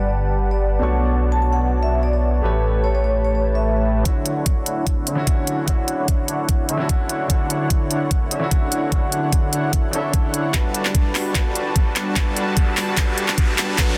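Playful and euphoric, this future bass clip moves in a half-time feel and is cut from a longer piece. A ringing, metallic vibraphone with fast motor vibrato carries the melody for the first 4 seconds, heard through sidechain pumping and dub echo, while a warm concert grand piano with deep bass sits in the background, pumping under a tape echo. Up front, an airy, smooth supersaw riff, detuned and filtered, pumps alongside a thick, detuned saw bass that stays mellow and chorused in the background. At 4.1 seconds a knocking, layered electronic kick and a trap kit with crisp hats and handclaps arrive as the build-up begins, with a filter sweep on the supersaw, a drum fill from 10.5 seconds and a background riser from 12.3 seconds. Chords in ninths colour the harmony, and the mix is dense and heavily limited with light reverb and a digital ambience.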